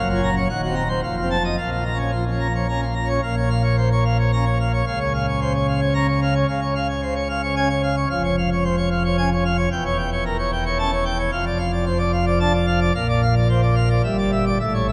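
Awash in a cathedral's long reverb of about 4.9 seconds, this is a majestic, stormy classical organ toccata in 3/4 at 111 BPM, heard as an excerpt from a longer piece. A solo pipe organ plays full plenum with brilliant mixtures and a romantic voicing, sitting up front and spanning from a deep Eb1 to a bright Bb5. It opens in Bb minor with a brief opening passage before a second section begins at 3.2 seconds, then turns to D minor at 9.7 seconds.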